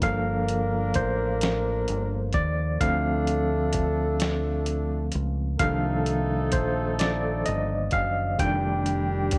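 Lightly reverberant and close, this slow six-eight R&B piece is sultry and yearning, moving through Gm9, Dm7, Cm11 and F13. An overdriven tine electric piano, bright and barky through a combo amp with fast tremolo, takes the solo across the full 9.4 seconds, while a mellow horn section adds smooth-topped, octave-doubled stabs with light vibrato. Underneath, a deep dub fingered bass sounds dark and round, and a dusty sampler-style soul kit brings compressed, gritty, tape-warm hi-hat and snare with a thumpy kick.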